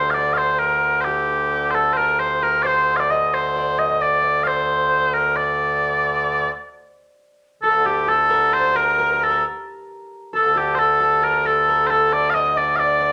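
A 6/8 pulse moves at 88 beats per minute, counted in dotted quarters with a straight feel, giving this medieval excerpt a driving, ancient character. Mellow small bagpipes carry the melody up front, their sweet, continuous tone shaded with vibrato as they play a solo line across a broad range. Behind them, a concert harp supplies a second line in the background, its bright, fingerpicked notes ringing from the first moment. A new section begins at 6.7 seconds, and shortly after, at 7.6 seconds, a reedy bass recorder joins on a second line, distant and airy with a straight tone, soft attack and a touch of chiff. A wet studio reverb surrounds the ensemble, lending the small group a sense of shared space.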